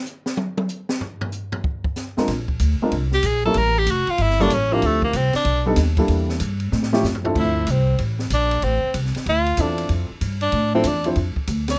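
An open jazz drum kit with dark cymbals, a high-tuned snare and a boomy kick opens this cool, smoky swing-and-bop excerpt in D minor at 189 BPM, taking a short solo before a woody pizzicato upright bass and a mellow, worn baby grand piano with audible action noise enter at 2.2 seconds, and an edgy, forceful tenor saxophone with vibrato begins its solo at 3.1 seconds, all caught close and dry with the drums adding a fill at 6.7 seconds.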